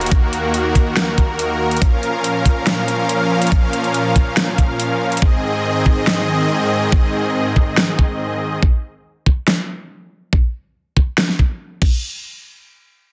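Detuned supersaw chords, huge and bright with sidechain pumping, open this menacing, chaotic heavy wobble dubstep fragment at 141 BPM in a half-time 4/4 feel. They move from Ebm to Bbm to Ab over an overdriven big-room drum kit with a massive snare, metallic hats and crash, joined by an up-front, tape-flavoured knocking kick. At 8.6 seconds the chords drop out, and the drums carry on until 11.9 seconds in a dense, heavily limited mix with a moderate plate reverb.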